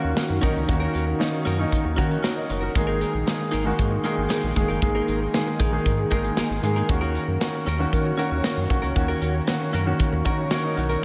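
Clear, up-front baby grand piano accompaniment with slapback echo opens this urgent, dramatic 1980s-style pop excerpt in Eb minor at 116 BPM, joined at once by a twangy, bright clean electric guitar riff carrying subtle chorus and digital delay, dark, detuned synth brass stabs in the background treated with chorus, phaser and delay, and a round, deep analog bass, while a punchy, polished studio drum kit of kick, medium-tuned snare and hi-hat arrives at 0.2 seconds, the whole set in a lush hall reverb for a big arena sound as the harmony moves from Ebm7 to Absus2 and back before a piano fill at 10.0 seconds.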